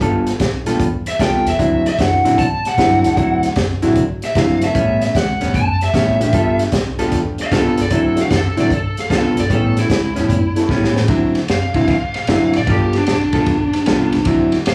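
Overdriven lead guitar through a small cranked amp carries the melody from 1.1 seconds, turning into a solo at 11.1 seconds, in this laid-back, rollicking electric blues shuffle in D mixolydian at 152 BPM, cut from a longer piece. Underneath, a clean, fingered electric guitar plays a riff, a thumpy pizzicato upright bass holds the low end, and a gritty, saturated breakbeat drum kit with a high-tuned snare and tight kick swings along, marking the change with a drum fill at 10.7 seconds. A very quiet, boxy upright piano comps until 10.7 seconds, and the band sounds played live in one room with moderate studio reverb.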